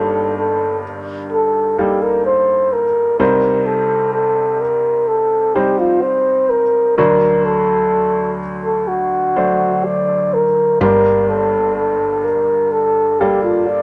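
Folk in a reflective, heartbroken mood, this excerpt from a longer piece sets a breathy flugelhorn up front with a whispered, intimate jazz-style solo, its soft attacks, scooped notes and light vibrato carrying a dark, smooth top over a chord movement from Eb/G through Cm and D to Gmadd9. A bright upright piano accompanies throughout, brilliant and woody with long sustain and audible action noise, while a round, hollow-body fretless electric bass enters low at 10.8 seconds. Light reverb gives the close, polished sound a gentle sense of space.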